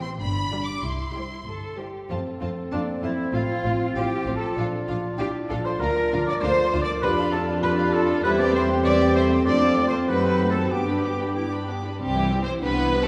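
This playful, whimsical film cue, cut from a longer piece, opens with the full string body: two violin sections, one carrying the melody and one a soft-attacked second line, sit distant and lush in the background over a dark viola section, a close, smooth cello section and a woody double bass section, all bowed with vibrato. At 97 BPM in a straight 2/4, the music moves with a quirky, mischievous lightness, starting in F major and settling toward C major from 7.0 seconds. At 2.1 seconds the woodwinds and brass join: a solo clarinet on a second line, a clear bassoon in the accompaniment, and a dark French horn section holding soft-attacked chords from a roomy distance. Shortly after, a vibraphone played with soft mallets adds a metallic, ringing melody with slow motor vibrato, while an airy, hollow flute and a mellow oboe trace further second lines. The harmony passes through colorful turns such as an F#dim7 before resolving to G and then C, where the strings and vibraphone carry the final moments. 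A wet scoring-stage reverb places the ensemble further back in the room, giving the cue a spacious, cinematic glow.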